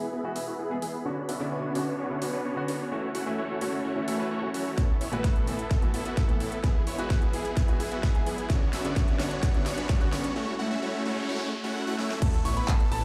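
Festival progressive house at 129 BPM in A major, euphoric and anthemic, this build-up excerpt rides bright, huge supersaw chords pumping with sidechain, low-pass filter sweep and tape echo over a lush, very quiet unison pad, a thick, menacing detuned saw bass, an intimate baby grand piano with audible action noise, an overdriven big-room kit with a huge snare and metallic hats, a punchy electronic kick entering at 4.8 s, a very quiet riser building from 0.8 s with a noise sweep through the break from 10.4 s, and a present piano arpeggio landing on the impact at 12.2 s, all bathed in a moderate, lush hall reverb.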